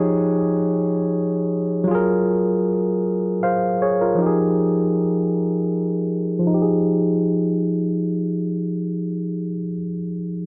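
A dark, warm R&B recording cut from a longer piece, this sultry, late-night passage at 52 BPM in a straight 6/8 features a barky, clean tine electric piano played solo through a combo amp, up front and touched with tape echo in a moderate studio reverb, moving from Fm9 to Gbmaj9 and back to Fm9 in F minor while a filter sweep runs through the first 6.5 seconds before a shorter passage from 6.5 to 8.8 seconds.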